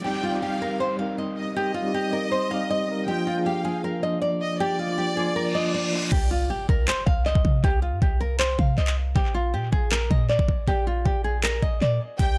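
Hip hop trap at 158 BPM in a half-time feel, eerie and melancholic, where a full-bodied fingerpicked nylon-string guitar with finger squeak carries the melody through tape echo over a lush bowed violin section and a worn, slightly out-of-tune tine electric piano with medium tremolo, until a reverse cymbal at 5.5 seconds and an impact at 6.1 seconds bring in a deep, boomy sine 808 bass and an up-front trap kit with knocking kick, handclaps and crash, its metallic hi-hats muted, all in an echo-heavy digital ambience cut from a longer piece.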